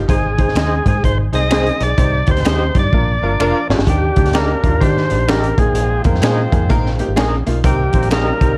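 A dark, warm-sounding excerpt of joyful uptempo 1960s-style soul in Eb major at 127 BPM with a swung 4/4 feel, where a gritty, overdriven tonewheel organ with key click carries the melody over a round, foam-muted fingered bass, a bright, slightly detuned upright piano with audible action noise, and a punchy, saturated breakbeat kit that plays a fill from 2.9 to 3.9 seconds, while close dry finger snaps add percussion and a twangy tremolo guitar and a tight, clear horn section with octave doubling sit in the background.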